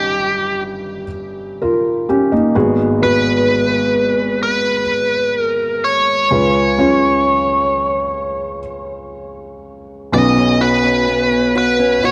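Pop with a heartfelt, hopeful mood, cut from a longer piece and set in a moderate, lush hall reverb with a dark, warm production. A biting, overdriven electric lead guitar carries the melody up front from the start, its bright picked tone trailed by digital delay. Beneath it, a felt-muted upright piano plays soft, mellow accompaniment with a smooth, vintage, intimate character, its thin felt and audible action noise sitting close to the ear. At 10.1 seconds the harmony settles on Badd9 and a fingerpicked acoustic archtop guitar enters lower in the mix with arpeggios, finger squeak audible and its notes also echoed by digital delay. The lush hall and warm production give the whole passage a glowing, enveloping space.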